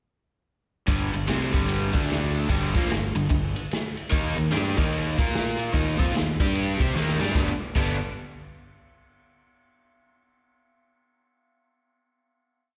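A bright, overdriven, double-tracked electric guitar leads this brooding, gritty blues rock and southern rock power-trio piece, picking a power-chord riff up front with a slapback echo. It moves at 148 BPM in 4/4 with a swung eighth-note feel, sitting in G minor and tuned to A4 = 438 Hz, and the riff moves through G5, D5, Gm, Eb5 and Bb5. A fuzzed, growly fingered electric bass with added overdrive doubles the guitar in a syncopated line, and a vintage acoustic drum kit with a punchy kick, medium-tuned snare, crash and ride drives a big rock groove, its top end rolled off. The trio kicks in together at 0.9 seconds, a drum fill arrives at 6.9 seconds, and the piece closes on a final G chord at 7.3 seconds. The sound is that of a live gig heard through the venue's PA, carrying a recital-hall reverb.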